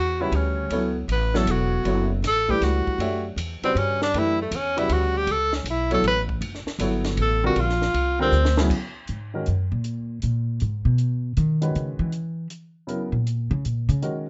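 This excerpt from a longer modal jazz piece opens with a bright, present tenor saxophone soloing up front over a woody, thumpy pizzicato upright bass, joined within moments by a baby grand piano and a compact cocktail drum kit. The mood is intense and searching, moving at 158 BPM in a swung 3/4, first in F# phrygian and then shifting to Eb phrygian at 8.7 seconds. The saxophone carries the melody until a drum fill hands off to an upright bass solo, its dark steel-string tone staying close and thumpy through the rest. The piano sounds intimate and worn, with short sustain and audible action noise, dropping out briefly before returning at 11.6 seconds, while the dry kit sits lower in the mix with dark cymbals, a high-tuned snare and a punchy kick. A modest small-room reverb surrounds the group, and the recording has a soft, rolled-off top end.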